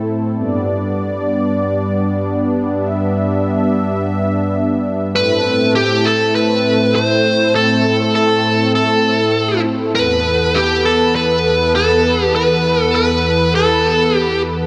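A moderate, lush hall reverb gives this synthwave excerpt a deep, spacious sheen. It opens on a detuned sawtooth analog pad, smooth and mellow with a soft attack and long release, its chorused sustained chords sitting up front across the whole passage. The harmony moves from G to Amadd9 and then to Esus4 over a straight four-four pulse, setting a driving, nocturnal mood. At 5.2 seconds an electric lead guitar enters up front with a biting, picked tone, carrying the melody through overdrive and a digital delay until 14.4 seconds. The clip is cut from a longer piece and ends at 14.7 seconds.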